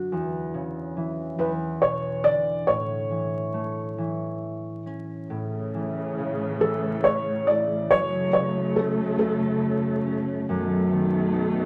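A felt-muted upright piano carries the melody from 1.4 to 10.1 seconds, its thick felt giving a soft, mellow, intimate tone that sits up front in this sleepy, gentle children's lullaby. A concert harp, thumb-plucked and ringing, accompanies from the very start and plays throughout, its acoustic tone sounding close and warm. At 5.3 seconds a dark chamber string section enters with bowed, sustained chords, their soft attack, vibrato and smooth top lending an expressive ensemble depth. The piece moves in a slow, rubato 6/8 at 46 BPM in A major, with harmonies that pass through A, F#m and B7/F#. Moderate studio ambience and a layer of vinyl crackle frame this brief excerpt, which is cut from a longer piece.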